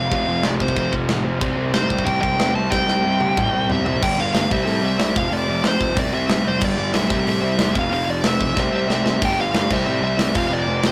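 Energetic and rebellious, this short punk rock excerpt charges along at 185 BPM in a straight 4/4, with a dark, smooth overdriven lead guitar singing the melody up front over two double-tracked rhythm guitars, one crunchy and overdriven, the other thick with fuzz, playing riffs in the background beside a growly, bright fuzz bass. A tight metal drum kit with bright cymbals and a tight kick sits forward from 0.1 seconds, throwing in fills around 2.7 and 8.6 seconds as the riff shifts between chords on F, C and G. The whole take has the rough, tube-saturated feel of a rehearsal room with a light touch of reverb.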